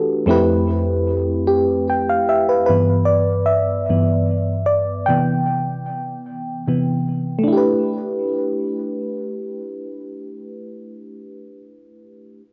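A warbling, mellow FM electric piano with a vintage noise layer and tape echo carries this tender, unhurried R&B fragment in a straight 6/8, drifting through Fmaj9#11, G6, Cmaj7 and G69 chords and stepping forward into a solo passage from 2.7 to 7.5 seconds, all set in a small, modest room with the soft grain of a home cassette recording.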